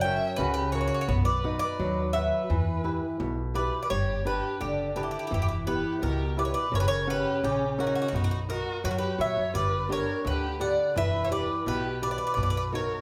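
Bittersweet and moody, this Greek folk piece for a bouzouki band moves in a straight two-beat metre and is cut from a longer piece. The picked bouzouki carries the melody up front, its metallic double strings partly doubled at the octave, while a single bowed violin plays a dark second line full of vibrato and expressive portamento. A fingerpicked flamenco guitar shares the foreground with acoustic accompaniment, and a pizzicato upright bass on steel strings adds a woody, thumpy low end. A deep clay-shell darbuka with a natural skin sits distant in the background, entering at 0.1 seconds. The band plays live together in one room, wrapped in a wet, large studio reverb, and a brief opening section gives way to a longer second section at 3.9 seconds as the chords circle through F#, B, Em and G.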